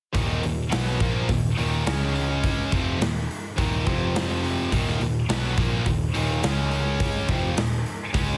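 Hard rock in Eb minor at 105 BPM, this menacing, aggressive cut from a longer piece drives a riff on a bright, high-gain distorted guitar up front, joined by a tighter distorted guitar sitting in the background, over a dark, round, foam-muted picked electric bass. A punchy, polished rock kit with a medium-tuned snare, kick and hi-hat rings in an airy stone room, and the chords move from Ebm through Db5, Eb5 and F5 before circling back. The whole mix carries light reverb and a heavily compressed, radio-like sound.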